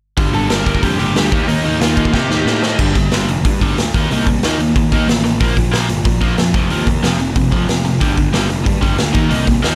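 A dry mix puts a gritty, saturated garage drum kit of crash, hi-hat, punchy kick and snare in a pumping stone room, along with a double-tracked, compressed overdriven guitar riff, up front in this aggressive, urgent punk rock excerpt, driving at 184 BPM in G minor with a picked fuzz bass that growls underneath. A dark, distorted bluesy lead guitar with tape echo sits in the background from 0.3 to 2.6 seconds over Gm and Eb chords. A drum fill at 2.1 seconds leads into a power-chord section moving through G5, Eb5, Bb5 and F5.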